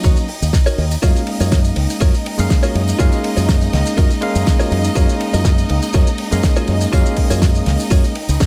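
A punchy, up-front electronic kick anchors this groovy, sensual nu-disco excerpt at 122 BPM with a light swing, joined by a damped 70s kit with dark cymbals and a fat snare, plus a very quiet tambourine in the small room. A bright fingered bass with an envelope filter and tube saturation drives the low end, while a clean, scooped electric guitar riff with subtle chorus and tape echo sits beside a bell-like tine electric piano that pumps against the kick and trails tape echo. Underneath, a lush, woody string section holds dark sustained chords with vibrato, pumping over the move from Ebm7 to Gbmaj7.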